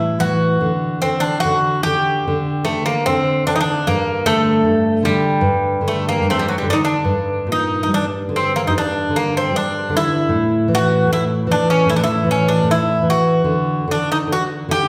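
Heard from further back in a recital hall, the recording is bathed in a wet reverb that lingers for about 1.3 seconds around the two instruments. This mournful, passionate fado-style ballad moves in two with a free, rubato feel, and this short passage is cut from a longer piece. A Greek bouzouki carries the melody from start to finish across the 14.9 seconds, its picked double strings giving a metallic ring, some of them doubled at the octave, placed up front. Beneath it, a nylon-string guitar fingerpicks the accompaniment in a deep classical register, full-bodied with fresh strings and the occasional finger squeak, also close at hand. The harmony moves from an open A5 through a chordless moment and a Gsus2, then states its phrase again over G minor and A5 before closing on another chordless stretch.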